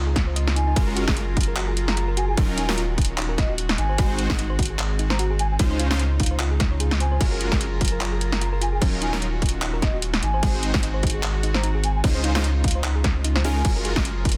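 A half-time groove with a light sixteenth-note swing drives this euphoric, lush future bass excerpt, built on an overdriven, hard-clipped electronic kick that sits up front from 0.2 seconds. A layered pop drum kit adds a fat, softly clipped snare, metallic hi-hats, handclaps and crash cymbals, while a deep, thick saturated sub bass anchors the low end. Bowed studio strings hold soft, floating sustained chords in the background, and a round, tine-like thumb-piano synth pluck warbles through vintage-sounding arpeggios treated with chorus, cassette-tape colour and dub echo. Punchy, detuned supersaw stabs carry a riff with dub echo, and from 0.6 seconds a distant, expressive baroque flute with vibrato sings the melody through a delay. The harmony cycles through lush ninth chords and a dominant seventh, and the pads, pluck, stabs and bass pump under sidechain compression, all packed into a dense, heavily limited, dry mix.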